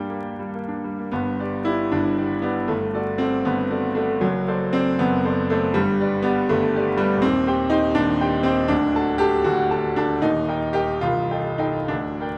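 Bittersweet and stormy, this romantic character piece for solo piano is cut from a longer work. It moves in a rubato 6/8 at roughly 65-84 BPM in G major, opening on a brief G minor shading before settling into G major and drifting through darker harmonies toward a closing Am7b5/C. The bright grand piano sits up front with a brilliant, vintage tone and long sustain, spanning C1 to A5 in a moderate scoring-stage reverb, with vinyl crackle beneath.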